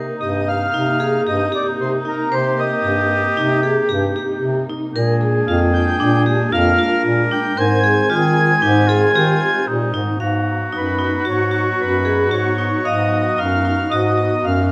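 This is a contemporary instrumental chamber piece in 5/4 at 114 BPM, cut from a longer work, with a hopeful, playful mood and a straight feel. A reedy, mid-forward accordion carries the melody from 0.2 s, its full, mellow tone sitting up front. Beneath it, an oboe with classical poise and a gentle vibrato plays a second line, while a soft-attacked, subtoned bass clarinet anchors the low end in a jazz manner. A vibraphone struck with hard mallets spins metallic, ringing arpeggios with a fast motor vibrato and an airy brightness, and a muted string section, bowed con sordino, holds dark, veiled sustained chords. The harmony moves from Cm7 to Bb7 and then Abmaj7, with a new section arriving at 10.2 s. The sound is close and detailed, with light reverb giving the ensemble a touch of space.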